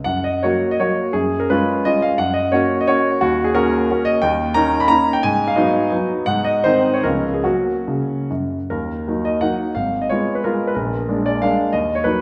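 A polished, up-front grand piano plays alone in this short fragment of a proud, rustic romantic classical dance in 3/4, its dotted rhythms pushed and pulled in free rubato between 135 and 202 BPM, moving from F# major into Eb minor at 8.7 s and heard from further back in a wet recital hall.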